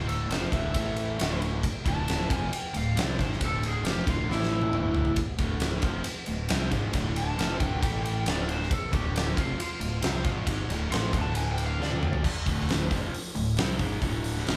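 An overdriven slide guitar solo opens this smoky, brooding blues rock and southern rock power-trio excerpt over a picked, double-tracked electric guitar riff and a growly, fuzz-drenched fingered bass. A huge arena drum kit sits up front with a fat snare and punchy kick, adding fills at 4.3 and 11.8 seconds before the slide guitar drops out at 12.3 seconds, all played live in one large room with moderate reverb.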